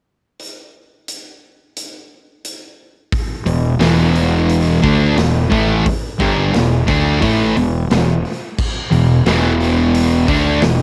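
Menacing and heavy, this hard rock excerpt opens with a big, acoustic drum kit of bright cymbals, punchy kick and medium-tuned snare alone before two sludgy, overdriven picked electric guitars (both with cassette-tape grit, one up front and the other in the background) and a growly fuzz-laden fingered bass crash in together at 3.5 seconds over an E minor chord, all captured dry in a home cassette recording.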